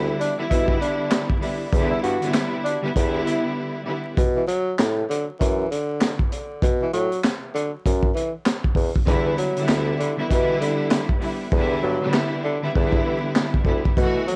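A dry, gritty recording with vinyl crackle frames this moody, tough boom-bap hip-hop excerpt in E minor at 98 BPM with a swung 16th feel, where a crunchy, saturated breakbeat kit with punchy kick, high-tuned snare, hi-hat and handclaps sits up front beneath a breathy, subtone tenor saxophone melody with scooped notes and tape echo, a mellow bassoon carrying the bass, a lush bowed string section with a cassette-tape tint playing over Em7 until 4.2 seconds and returning with that chord at 9.1 seconds, very quiet finger snaps between 1.1 and 2.5 seconds, a short break before the second section, and hi-hats muted near the end.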